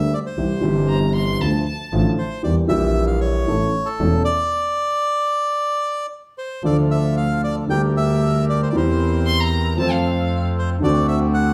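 A reedy, close-miked bandoneon carries the melody of this sultry, dramatic D minor tango at a rubato 115 BPM, over a dark, boxy grand piano with audible action noise and an earthy bowed double bass, with a focused, distant violin adding a second line at 0.9 and 9.3 seconds, a smooth second bandoneon entering with stabs at 6.6 seconds after a stop, and a wet studio reverb placing the ensemble further back in the room.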